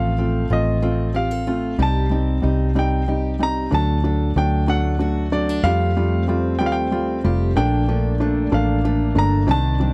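A six-eight pop ballad at 62 BPM, aching and melancholic, where a bright, brilliant concert grand carries the melody over a soft, felt-muted upright piano with audible action noise, a round, punchy foam-muted electric bass up front, and a background picked steel-string acoustic guitar playing arpeggios with finger squeak, joined at 5.6 seconds by a mellow French horn section with light vibrato on a second line, all in a dry, close 1970s-style studio sound.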